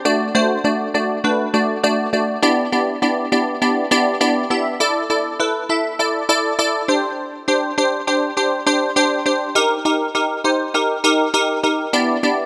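This pop excerpt moves at 101 BPM in a straight 4/4 in G major, tuned slightly sharp to A4 = 441 Hz, with a carefree, euphoric mood. A lone wavetable chord stab carries the entire passage from 0.1 to 12.5 seconds, spanning A3 to E5. Its digital, crisp tone comes from detuned unison voices with a fast attack and decaying tail, and a filter sweep keeps the sound evolving as it sits bright and up front, trailed by tape echo. The brief opening gives way at 2.4 seconds to a drop that runs to the end. Across the excerpt the harmony moves from D to G6, Dsus2, Csus2 and Eb before settling back on G6, all within a light reverb.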